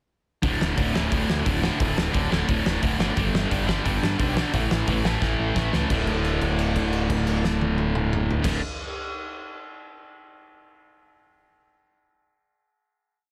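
Punk rock at 175 BPM in 4/4, angry and aggressive, with a bright, scooped, double-tracked distorted electric guitar picking driving eighth-note power chords up front through D5, G and A5, while a round, overdriven picked electric bass growls out driving eighth notes underneath. A loose indie drum kit with a fat snare and punchy kick pushes a two step groove from a small, pumping room, then breaks into a drum fill at 5.2 seconds before the band lands on a held D5 chord at 5.9 seconds that rings until 8.4 seconds. The sound is dry, dense and heavily limited.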